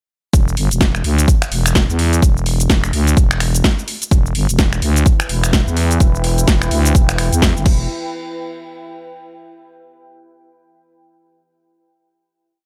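The mix is dry and close, with the kick, drum kit and bass placed up front. This is a swaggering, bouncy bass house piece in E minor at 127 BPM in 4/4, with a 60% swing on the sixteenths and tuning set to A4 = 444 Hz. The drop hits at 0.3 s with a punchy four-on-the-floor electronic kick and a layered house kit of shaker, closed and open hi-hats, finger snaps, a cracking snare backbeat and crash cymbal. Both drum parts are tape-tinged and re-recorded in a large room. A growling, thick FM bass plays chopped phrases between E1 and E2, with tube saturation and sidechain pumping, over a single E minor chord. At 4.9 s a deep, moody pad of detuned sawtooth and sine voices enters quietly with a slow attack, chorus, its own reverb and sidechain pumping, sustaining chords between E4 and G5. At 7.9 s the harmony falls away into a final hit that closes the piece.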